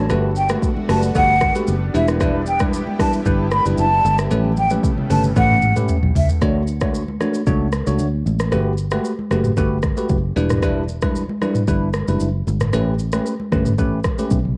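A straight 4/4 afrobeats groove at 114 BPM in D major rides on an electronic afro-pop drum kit with a deep kick and metallic hats, very quiet high-tuned congas, and a dark, round fingered electric bass set up front. A bell-like tine electric piano with phaser and cassette-tape colour carries the chords. Through the first section a thick, detuned unison pad sits in the background while a breathy, hollow jazz flute with vibrato and tape echo sings the melody from 0.4 to 6.3 seconds, and a drum fill leads into the second section at 6.4 seconds, all in a romantic, breezy mood with light reverb and the grain of a home cassette recording.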